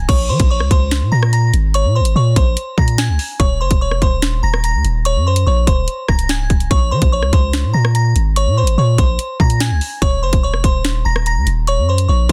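A half-time drill groove at 145 BPM drives this ominous, tense hip hop excerpt in Bb minor, with an up-front electronic kit of hard-clipped kick, sharp soft-clipped snare, bright hats, rim clicks and crash cymbal entering at 0.1 seconds. Beneath it, a long, sustained 808-style bass with a deep, mellow sine tone decays under chords moving from Bbm through Eb5 to Ebm, while a delicate, tinkling FM tine bell with a vintage chorus warble carries the melody high above. The dry, dense, heavily limited master keeps the drums and bass close and hard-hitting, with the bell sitting lower in the mix.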